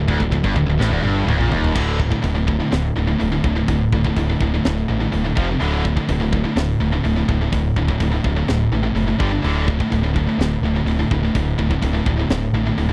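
Heavy metal with a dark, epic mood, cut from a longer piece, where two bright, high-gain distorted guitars play a picked riff built around D5 with brief turns to F5 and G5, and one sits further up front. A growling, overdriven electric bass, direct and amped, anchors the low end alongside a tight acoustic kit with a high-tuned snare, china and crash cymbals, hi-hat and toms. The drum fill between 0.8 and 1.8 seconds leads into the main section, all captured in a dry, close 1970s-style studio sound with a mid-forward, rolled-off drum tone.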